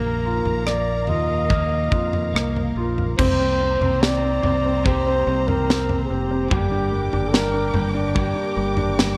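A breathy, close-miked flugelhorn sings a longing jazz-style melody with scooped notes over clear baby grand piano, lush bowed strings with vibrato and portamento, a twangy clean electric guitar playing arpeggios through analog chorus, and a punchy fingered electric bass, all entering together in this slow, emotional C minor pop ballad at 72 BPM. At 0.5 seconds a mid-forward studio drum kit joins with a punchy kick, high-tuned snare, rim clicks, toms and crash cymbal, its top rolled off. The chords move from Bbsus4 to Cm7 at 3.2 seconds and then to Gm, in a dry, close sound with little reverb.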